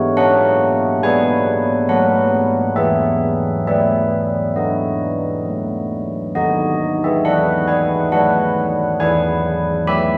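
A solo carillon carries this short classical tune for church bells, its bronze, ringing tone sitting up front with a distinct minor-third overtone. The bells sound mellow and airy, as if struck with a padded clapper, and they range from D#3 up to B5. At 68 BPM in 3/4 with a straight feel, the music moves calmly in B major, its mood both festive and serene. The harmony passes through F#, G#m, E and B/F#, reaches a chordless moment at 5.4 seconds, then returns through B/D# to close on E at 9.0 seconds. A wet concert hall reverb with a 2.3-second decay lets each strike bloom into the room, lending the fragment, cut from a longer piece, a spacious, churchlike glow.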